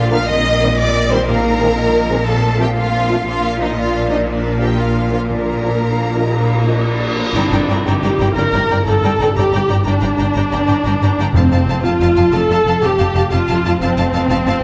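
This excerpt from a heroic, adventurous film score opens in 12/8 at 121 BPM with lush strings: an expressive symphonic violin melody with portamento over a close studio violin line, up-front dark violas, focused cellos and smooth double basses, all joined by an airy, distant flute ensemble and by very quiet mellow French horns and clear trombones holding chords until about 7 seconds, while hard-mallet timpani, a dark cymbal swell with tam-tam and a band accent at 7.4 seconds mark the move from Bb-based harmony to G minor and F in a wet, reverberant scoring-stage space.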